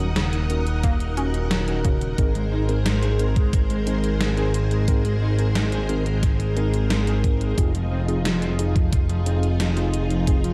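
Cinematic and nocturnal, this synthwave excerpt rests on lush, vintage string-machine chords and a fat, detuned sawtooth bass that pumps under an overdriven, thumpy electronic kick arriving at 0.8 seconds, while a gated 80s drum machine adds hi-hat and a gated-reverb snare. A round, chorused analog pluck arpeggio glints briefly at the start before dropping out at 2.1 seconds, and a mellow, clean tine electric piano drops tape-echoed stabs over the Ebm7, Abadd9 and Fm7 changes. From 2.4 seconds, a dark, slightly broken-up electric guitar riff sits in the background, coated in lush chorus and 12-bit sampler grit, all within a dark digital ambience.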